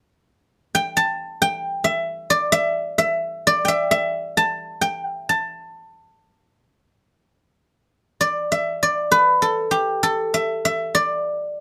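A light reverb surrounds a single guzheng placed up front, giving this short excerpt of Chinese traditional music a serene feel. The guzheng plays alone, entering at 0.7 seconds and ringing on until 11.6 seconds, its fingerpicked acoustic tone silvery and warm. The tempo drifts loosely around 59 to 68 BPM in a rubato 4/4, so the playing feels unhurried and flowing rather than strictly pulsed. Set in the A shang mode and tuned to A4 = 443 Hz, the melody stays within a compact span from G4 to A5. A new section begins at 7.3 seconds, carrying the calm, flowing mood through to the close of the fragment.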